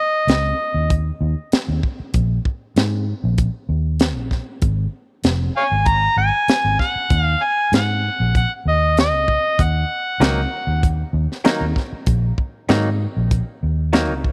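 Straight-eighth soul blues in Eb minor at 97 BPM, smoky and soulful, where a gritty, overdriven harmonica with tongue slaps blows up-front phrases between Db5 and Bb5 from 0.0 and again from 5.6 seconds over a round, foam-muted fingered electric bass and a tight, dry funk drum kit with a high-tuned snare, before a bright, twangy clean electric guitar adds picked stabs from 10.2 seconds in a light, small-room ambience.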